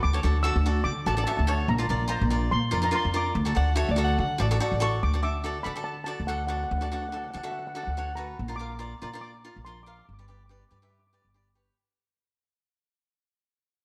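A carefree, sunny calypso excerpt in D major at 143 BPM opens with a mellow, shimmering steel pan melody over a woody, growly pizzicato upright bass and a crisp, picked cavaquinho sitting up front. From 3.6 to 5.0 seconds a bright alto saxophone with light vibrato adds a brief second line, and the lilting sixteenth-note swing carries through chords moving from D to Bbadd9 and later Bb and G. A light reverb adds a touch of space as the piece fades out from 5.0 seconds to the end at 11.8 seconds.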